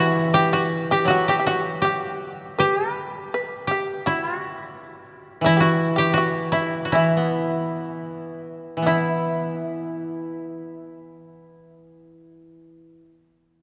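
A woody, fingerpicked koto carries the melody up front in this austere, still fragment of Japanese chamber music in free rubato, alongside a second koto playing accompaniment in a lower register and a bright, buzzing, plectrum-plucked shamisen tracing a percussive second line in the background, the trio set within a long cathedral reverb as the pace slows between 5.4 and 8.9 seconds.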